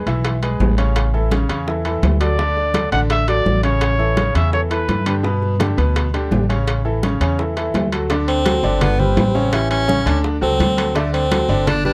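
An edgy tenor saxophone takes a solo from 8.3 seconds to the close, its punchy pop-style line carrying a light vibrato up front in this festive, danceable salsa, cut from a longer piece. Earlier, a clear trumpet states the melody between 2.2 and 5.2 seconds with scooped notes and a vintage tone. Underneath, a bright baby grand piano plays the accompaniment up front and intimate, its long sustain and audible action noise part of the sound. A woody, thumpy upright bass with gut strings is plucked near the front. Congas with a thin skin and tight, high-tuned bongos sit in the background, joined by ringing metal-shell timbales, while the chords move from E through A and D to G before closing on a D, G, A7, D turn. The recording has the dry, close feel of a 1970s studio with little reverb.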